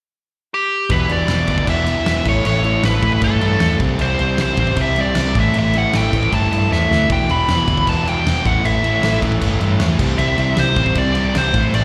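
A nasal lead guitar with a parked wah, overdrive and slapback echo opens this raw, urgent punk rock excerpt at 0.5 s; at 0.9 s it is joined by a bright, crunchy overdriven riff guitar, a dark, sludgy guitar in the background, a very quiet double-tracked distorted guitar, an up-front round hollow-body short-scale bass and a loose acoustic indie drum kit with a fat snare and tight kick that plays a fill at 6.7 s, the band heard as a live gig through the venue's PA in recital hall reverb over chords moving from Em through A and C to Am.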